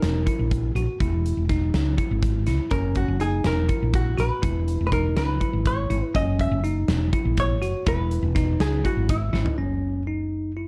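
This bright, intricate progressive piece in 7/8 at 245 BPM (eighths) opens with the full band at once: a dark, clean, compressed hollow-body jazz guitar takes a picked solo over bell-like tine electric piano arpeggios, a growly, punchy fretless bass up front, and a big-room acoustic rock kit with a fat snare and smooth tone. The harmony moves between F#7 and E6 in F# mixolydian, and a drum fill at 9.3 seconds leads to a brief new section where the guitar and drums drop out at 9.6 seconds, leaving electric piano and bass on an F#5 chord until 10.7 seconds. Light reverb, a dark production and a faint mains hum give this fragment of a longer work its shadowy sheen.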